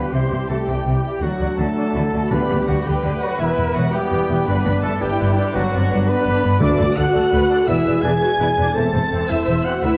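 A 12/8 pulse carries this heroic, adventurous film-score passage, cut from a longer piece, where a distant studio violin section sings the lush, expressive melody with portamento over second lines from pure flutes, a very quiet clarinet, a punchy oboe and a focused symphonic violin section in the background. Beneath them, violas with portamento fill the harmony, a mellow French horn section and very quiet vintage trombones hold sustained chords, clear trumpets add stabs, and a rich cello section and a close double bass section anchor the bass, with dry timpani strikes at 2.3 and 6.6 s. The whole sits in a wet recital-hall reverb and carries the wobbling pitch drift of worn, old cassette tape.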